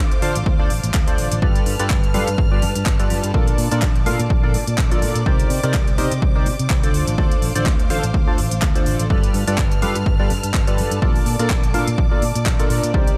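Soulful and bittersweet, this short cut from a longer piano house track moves at 125 BPM with a lightly swung 16th-note feel, as lush, woody bowed strings hold sustained chords and a warm fingered electric bass pumps under the sidechain, while a hollow, percussive organ stab with chorus and diffuse ambient delay plays a riff over a garage kit of crisp hats and handclaps and an overdriven, punchy electronic kick that sits up front, all moving through Dm7, G9, Bbmaj7 and Cm9 in light digital ambience.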